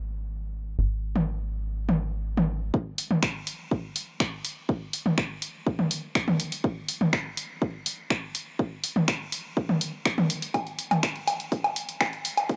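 A steady, straight 4/4 pulse at 123 BPM drives this dramatic, cinematic melodic techno clip, cut from a longer piece. It opens on a tight sequencer bass around Ab1, a nasal, sawtooth-and-square pluck with a fast attack and decaying tail, pumping against a sidechain and sitting up front. At 1.2 seconds a punchy analog drum machine joins with finger snaps, hi-hat, toms and woodblock, overdriven and heard up front in a large room. The bass drops out at 2.7 seconds as a heavy, layered electronic kick arrives with a tape-warm weight, high-pass filtered and placed in a small room, launching a build-up that runs to 12.6 seconds. The overall sound is dry and close, with little reverb and a high-pass filter thinning the low end.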